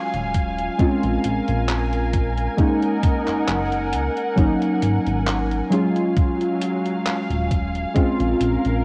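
Hazy and melancholic, this short vaporwave piece drifts along with a gentle swing, heard here as an excerpt cut from a longer work. Warbling lo-fi synth keys carry the accompaniment from the first moment, their nostalgic square and sawtooth tones coloured by ensemble chorus and tape echo, while a muted studio string section holds dark, veiled chords alongside them, bowed con sordino with vibrato. A glossy, retro synth bass joins at 0.1 seconds, its pulse-wave and sawtooth sound given a filter pluck, chorus and tube saturation. At the same moment, a detuned 8-bit digital drum machine adds handclaps and hi-hat. An up-front, thumpy electronic kick drum enters at 0.3 seconds, and the drum parts carry a cassette-tape sheen and the feel of being re-recorded in a small room. The harmony moves through rich minor-eleventh, sixth-ninth and suspended chords, and the whole recording sits in light reverb with the intimate character of a home cassette recording.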